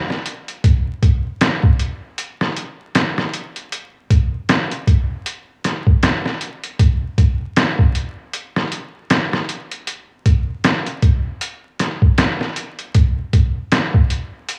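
A dry, gritty recording with vinyl crackle and small room ambience frames this dark, melancholic trip hop excerpt, where a lone up-front, sampler-style drum kit, compressed and pitched down, with a thumpy kick, medium-tuned snare and hi-hat, plays with a swung 16th-note feel from 0.1 to 14.6 seconds.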